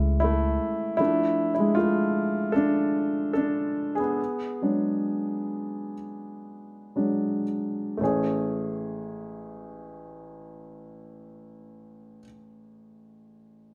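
Emotional and heartfelt, this slow pop fragment in A major moves at 56-79 BPM in a straight 4/4, with an intimate grand piano up front whose action noise is audible as it plays chords from Amaj7/C# through Dm and Bm6/F#. A dark, round, punchy muted electric bass sounds only in the first 0.6 seconds, after which the piano carries the music alone, slowing down until a second section arrives at 8.0 seconds on Amaj7. The players share one room wrapped in a wet studio reverb, giving the cut-off passage a live, close feel.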